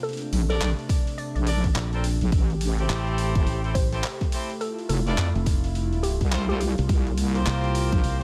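A heavy, saturated wobble bass sits up front in this gritty, swaggering glitch hop excerpt at 105 BPM, swung on the sixteenths in A phrygian. A punchy electronic kick joins at 0.9 s and a growly fingered electric bass at 1.8 s. Meanwhile a pitched-down boom bap sampler-style kit supplies handclaps, hi-hat and snare, and a bright, vintage horn section plays stabs with sidechain pumping and digital delay. In the background, a mellow, detuned analog pad holds Bbmaj9, Am7, Fmaj7 and C7sus4 chords, and a dark, woody wave-folded pluck carries the melody until 6.7 s, all within a digital ambience.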